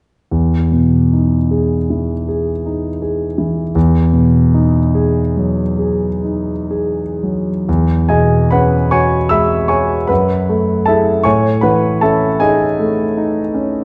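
Impressionist classical solo piano in E major, hazy and luminous, unfolds in a rubato 9/8 at 39-55 BPM on a clear, polished concert grand that sits up front and intimate, with audible action noise and deep bass spanning E2 to E6, moving through Emaj7, G#m7/E, E69, F#m9 and Amaj7#11 within a moderate scoring-stage reverb and a dark, warm production, in a fragment cut from a longer piece that plays from 0.3 to 13.8 seconds.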